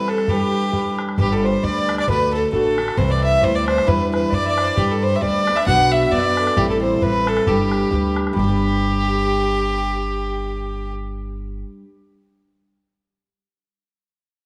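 Swung eighth notes drive this bright, rollicking Celtic polka in 2/4, a fragment cut from a longer piece. Up front, a rich, earthy fiddle carries the melody with an airy bow and a close, slapback-echoed presence, while a second, darker fiddle sits very quietly beneath it, its boxy tone colored by light vibrato and portamento. A full-bodied, picked dreadnought acoustic guitar supplies the accompaniment through G, D, Cmaj7, Em7, Bm and Am7, and a boomy, open bodhran plays along in the background until 8.6 seconds. A growly, thumpy pizzicato upright bass with steel strings and a woody edge joins at 1.2 seconds, and the fiddles stop at 10.9 seconds. The ensemble sits in a lush echo chamber reverb, giving the session a lively, spacious glow.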